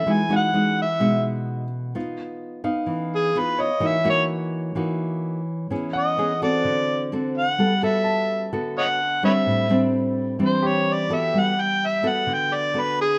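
A gritty, overdriven harmonica takes an up-front jazz solo with light vibrato, tongue slaps and scooped notes over fingerpicked, fresh-stringed nylon-string guitar in this sunny, breezy 128 BPM bossa nova cut from a longer piece, while a brilliant, polished grand piano with audible action noise sits in the background from 0.3 s to 11.5 s, the whole thing set in a moderate echo-chamber reverb as the key moves from E major to G major at 7.6 s.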